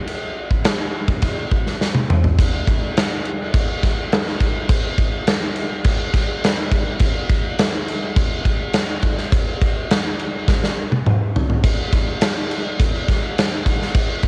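A big rock drum kit opens this heavy, menacing rock excerpt in straight 4/4, its punchy kick, medium-tuned snare, toms and crash cymbal sitting up front with the bright ring of a stone room and a cassette-tape grit. A drum fill at 1.8 seconds carries the kit into the next section, and another fill arrives around 10.5 seconds. The home cassette recording is dry, giving the solo acoustic kit a raw, close presence.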